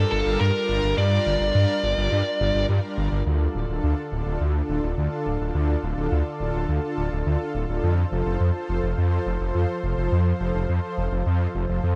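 A bright, 1980s-style digital production with light reverb gives this short synthwave excerpt a driving, cinematic mood at 105 BPM in 4/4, in D minor and tuned to A4 = 443 Hz. A fuzz lead guitar opens the excerpt with a picked, compressed, distorted melody through delay, sitting up front until 2.7 s. Beneath it, a unison pad of detuned sawtooth voices holds sustained chords throughout, its slow attack and long release softened by chorus and tremolo. A thick, saturated bass built from detuned saw and sine tones carries the low end with a fast attack and chorus, and it is the most prominent part. The harmony moves from Gm7 to Dm at 3.3 s and then to F, with the pad and bass carrying the track once the guitar drops out.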